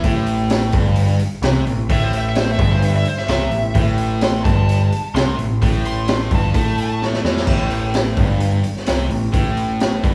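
A smoky, heavy slice of blues rock with a southern rock edge opens all at once, a dark, overdriven slide guitar played with fingerpicks carrying the melody over a cranked stack guitar riff, a growling picked electric bass and a raw garage drum kit. The slide solo sits high against the low, bright, double-tracked rhythm guitar, whose overdrive and slapback echo keep the riff up front, while the slide part carries its own slapback echo and analog delay. The bass is bright with overdrive, sounding both direct and amped, and sits forward in the mix beside the drums. The kit pairs a high-tuned snare with a boomy kick, crash and hi-hat, its saturated, mid-forward tone rolled off at the top. The slide guitar stops at 7.0 seconds as a drum fill runs to 7.5 seconds, when the riff, bass and drums push into a new section until the cut-off at 10.1 seconds. It sounds like a live gig heard through the venue's PA, with club reverb and small room ambience but little reverb overall.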